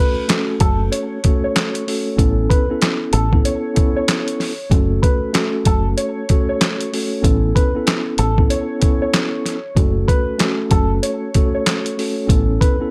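A gritty, pitched-down boom-bap drum kit sits up front with a thumpy kick, medium-tuned snare, hi-hat and handclaps, driving this dark, reflective hip-hop excerpt in F# minor at 95 BPM with a swung 16th feel, joined by very quiet, close finger snaps. A round, punchy fingered electric bass, foam-muted and deep, anchors the low end while a mellow, clean tine electric piano carries the accompaniment over an alternation between F#m and Aadd9. A worn, woody upright piano, slightly detuned and touched with analog delay, plays the melody throughout, all captured as a dry, gritty hardware recording with digital ambience.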